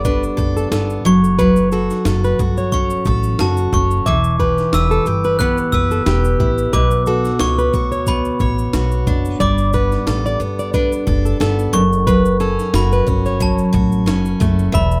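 This acoustic pop excerpt is carefree and sunny, moving at 90 BPM in 4/4 with a light 16th-note swing and tuned slightly low, to A4 = 437 Hz. A picked steel-string dreadnought acoustic guitar sits up front with a full-bodied, bright tone and audible finger squeak, carrying the accompaniment, while a fingerpicked flamenco guitar adds warm arpeggios in a higher register. A pizzicato upright bass with steel strings gives a woody low end, and a sampler-style breakbeat kit supplies a thumpy kick, a high-tuned snare and shaker, its sound compressed, pitched up and gritty, as if re-recorded in a large room. Above them, a glockenspiel struck with brass mallets plays a sparkling, bell-like second line that rings out over the texture. All five parts play throughout the 15 seconds, moving through Gadd9, F#m, Em and Bmadd9 before returning to Gadd9 and F#m, captured with close, detailed microphones and light reverb.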